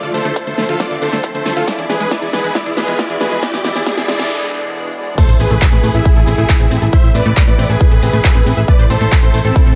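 Uplifting trance with a euphoric, emotional lift, this excerpt moves from a build-up into a full drop at 5.2 seconds. Bright, detuned supersaw chords carry the melody with sidechain pumping, a low-pass filter and delay, while a lush, airy unison pad holds sustained chords in the background. A tight, driving sequenced synth spins arpeggios beneath them, its filter pluck coloured by chorus, phaser, delay and a cassette-tape grit. A round, dark FM bass anchors the low end, and a big-room drum kit with a huge snare, handclaps, hi-hat, shaker and crash cymbal plays a drum fill until 4.3 seconds, when a short break arrives. A punchy electronic kick sits up front from 0.4 seconds, and in the background a riser and noise sweep build tension before an impact lands with the drop as the harmony settles from Dmadd9 and E onto A minor.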